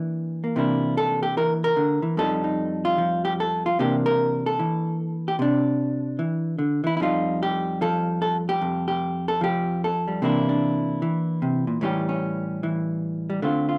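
A swung 4/4 at 149 BPM carries this relaxed, playful solo jazz excerpt in C mixolydian, where a single clean, picked electric hollow-body guitar sits up front in a dark mix with light reverb, moving through C9, F9 and C9 changes before landing on A7 at 11.8 seconds.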